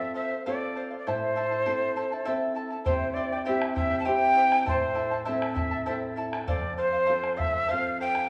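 A breathy, mellow cane quena carries the melody up front from the opening, with a crisp chiff and vibrato, over a shimmering fingerpicked charango and a dark, full-bodied nylon-string guitar, moving through F and A minor in a festive yet wistful Andean folk setting at 99 BPM in 3/4. A round bombo joins at 2.9 seconds as the harmony shifts to C, then back through A minor to F. The short cut from a longer piece sits in the wet reverb of a church or concert hall.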